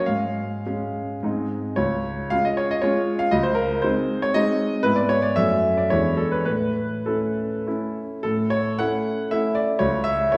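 Dotted rhythms in triple time drive this proud, rustic romantic dance for solo grand piano, taken with rubato between 94 and 124 BPM, its clear, smooth, vintage tone spanning Db2 to F#5 as the harmony moves from Db major into A major at 4.8 s, set in a wet recital hall reverb heard from further back in the room in this short cut from a longer classical piece.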